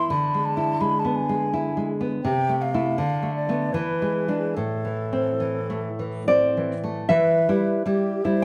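Romantic duo for flute and classical guitar in a rubato 3/4, melancholic and yearning, cut from a longer piece. The airy, hollow concert flute carries the melody with vibrato and a soft attack, while the up-front nylon-string guitar fingerpicks a deep, warm accompaniment, its finger squeaks audible, through a progression from E7/D to Am and a shift to Em at 7.1 seconds. Both play live together in one room, wrapped in moderate large-studio reverb.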